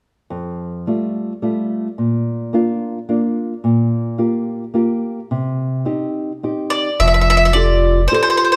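Italian folk in the manner of a serenade, this short cut from a longer piece feels sunny and lively, swaying in three with a loose, rubato pulse. A small, thumb-plucked nylon-string guitar carries the accompaniment alone from the start, sitting up front and moving through Fadd9, Bb, Gm7/Bb and Cm before returning to Fadd9. At 6.7 seconds a woody, picked mandolin with doubled strings joins as the melody, sounding warm and louder than the guitar. At 7.0 seconds, as the music turns to a new section, a pure sine sub bass arrives with a deep, clean, smooth tone, its fast attack giving way to a dark, sustained note that stops at 8.1 seconds. Light reverb lends a gentle sense of space to this intimate, acoustic setting.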